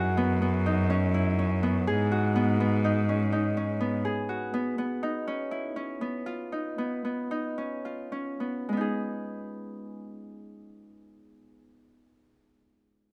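A bowed, biting cello with light vibrato holds an earthy bass line beneath ringing, fingerpicked Celtic harp arpeggios in this restless, pensive contemporary chamber piece in 9/8, moving through chords from F#7sus4 to G#m7, Emaj9 and C#9; the cello falls away at 4.0 seconds, the music slows from 4.5 seconds, and the harp carries on alone toward G#m until 12.4 seconds, all captured up close in fine detail with light reverb.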